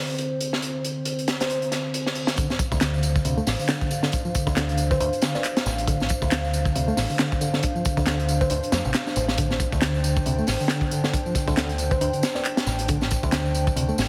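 Heavily compressed with a radio-like sound and a light small-room reverb, this funky, energetic breakbeat piece in D minor at 137 BPM opens on a dark, detuned analog pad with chorus, sidechain pumping and a filter sweep. It is joined at 0.2 seconds by a crunchy, gritty drum kit with a high-tuned snare and tight kick, then from 1.4 seconds by brief woody kalimba phrases colored by an AM radio tone and dub echo, and at 1.9 seconds by a very quiet reverse cymbal. The drop at 2.4 seconds brings in a reedy, worn electric piano riff with fast tremolo and tube saturation, along with layered electronic tambourine and handclaps, followed at 2.7 seconds by a round, punchy picked dub bass.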